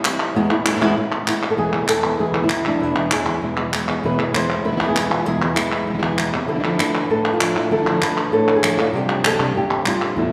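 A straight 4/4 pulse at 196 BPM is driven by crisp, up-front palmas hand claps in this intense, mournful flamenco fragment in E phrygian dominant, tuned to A4 = 441 Hz. A thumb-plucked acoustic flamenco guitar carries the melody close to the listener from the start, and at 1.6 seconds a second, fingerpicked acoustic flamenco guitar joins with stabs over harmony moving from E to Dmadd9 and then Csus2. Both guitars ring in a wet recital-hall reverb with a 1.7-second decay.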